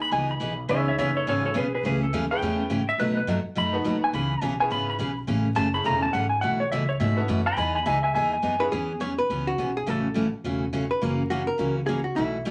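A warm, up-front lap steel guitar played with fingerpicks and volume swells carries the solo through the first 8.7 seconds of this cheerful, playful western swing excerpt at 209 BPM in E major, over jangly, metallic tack piano, a bright dreadnought acoustic guitar and a woody pizzicato upright bass, before a dark, clean hollow-body jazz guitar takes the melody at 8.6 seconds, all wrapped in wet studio reverb and vinyl crackle.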